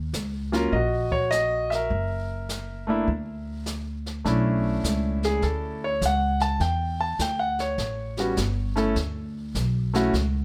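A jazz piano trio excerpt with a smoky, late-night mood, swinging in 4/4 at 102 BPM and settling into B minor from 4.3 s. The upright bass opens at the very start, plucked and woody with steel strings, sitting up front in a low register. A brushed drum kit joins almost immediately, with a medium-tuned snare, boomy kick and hi-hat heard from a natural-sounding studio room, kept well back in the mix. A clear, up-front grand piano carries the melody from 0.5 s and takes a solo from 4.3 s, moving through harmonies such as Ebm7, Bm11 and Dmaj7(no3). Moderate studio reverb gives the trio a sense of space, and the passage is cut from a longer performance.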